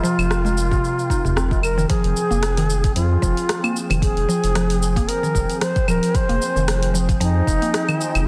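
An airy, expressive low wooden flute carries the melody up front with vibrato and digital delay, over a meditative organic downtempo groove at 113 BPM in F minor with a gentle 16th-note swing. A woody, mellow mallet-like synth pluck plays arpeggios through chorus, phaser and cassette-tape coloring, while a smooth, detuned analog pad holds sustained chords in the background and a round, dark analog bass sits prominently with tube saturation, both breathing with sidechain pumping. An afro-pop drum kit of claves, hi-hat, rim click and shaker plays from the start and is joined by a deep electronic kick from 0.7 seconds. A very quiet, high-tuned, ringing tabla appears only from 0.2 to 1.6 seconds, as the harmony moves from Fm7 to Fm at 1.9 seconds in this dense, warm, heavily limited mix.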